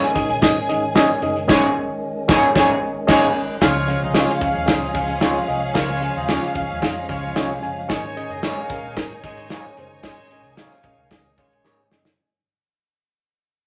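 Wet club reverb surrounds this uptempo 1960s-style soul recording, cut from a longer piece, moving at 112 BPM in 4/4 with a straight, joyful feel in Db major. An up-front acoustic drum kit with dark cymbals, a tight kick and a medium-tuned snare drives the groove. It is joined by a round, foam-muted electric bass and a jingly, distant tambourine. In the background, a reedy, worn electric piano sits beside a fat, lightly overdriven tonewheel organ holding sustained chords through a slow rotary speaker, while a clear, bowed string section carries a second line. A twangy, slightly broken-up guitar adds stabs with a warbly pitch drift from 1.0 s, and a vintage, jazz-style horn section enters at 1.5 s for a band accent. The harmony moves from Absus4 to Db at 3.6 s, where the music begins to fade out, ending on a drum fill.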